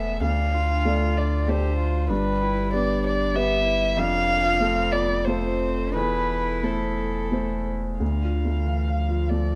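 Light reverb gives this short neoclassical excerpt for piano and strings an intimate, close feel, with a melancholic, longing mood in a rubato three-four lilt. A dark, woody solo violin carries the melody up front with vibrato and sul tasto bowing, and a warm, floating cello plays a smooth second line beneath it. A clear, boxy upright piano with audible action noise, a deep, clean sine sub bass and a mellow, round marimba struck with soft mallets fill out the texture, the marimba's background arpeggios dropping out at 7.9 seconds just before the music shifts into a new section at 8.0 seconds.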